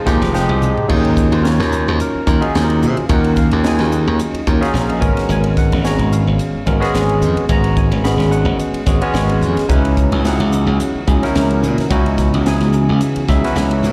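Funky and slick, this electric jazz fusion excerpt at 109 BPM in 4/4 with a light 16th-note swing opens as a barky, bright tine electric piano with analog chorus and slapback echo and a glassy, punchy slap bass sit up front, with a crisp drum fill arriving at 0.3 seconds before airy, polished drums with a high-tuned snare settle in. A soft, organ-like pad with ensemble chorus holds very quiet sustained chords at the start and returns at 10.9 seconds, while the electric piano slips in a fill at 4.5 seconds as the harmony moves from Fm9 through Ebm11, Abm11 and Dbm11, all heard as a live gig through the venue's sound system in recital-hall reverb.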